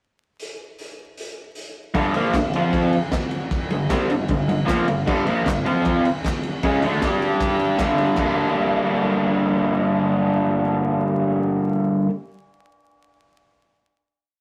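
This is a complete garage rock piece in G minor at 155 BPM in a straight 4/4, with a swaggering, menacing mood. The raw acoustic drum kit opens alone with a pickup bar, its punchy kick, medium-tuned snare, hi-hat, ride and crash setting a gritty, saturated garage stomp groove in a bright stone room, though its top is rolled off and its overall colour is dark and smooth. At 1.9 seconds the electric guitar arrives up front, double-tracked and overdriven, picking a bright power-chord riff that moves between G minor and F and G power chords across a span from G2 to G4. A group handclap joins soon after, sitting hollow, close and dry in the background. The drums and claps drop out at 8.3 seconds, leaving the guitar to hold a final G minor chord to the end. The whole recording feels like a rough rehearsal-room take, with tube saturation, a wet studio reverb with a 0.6-second decay, and a layer of vinyl crackle.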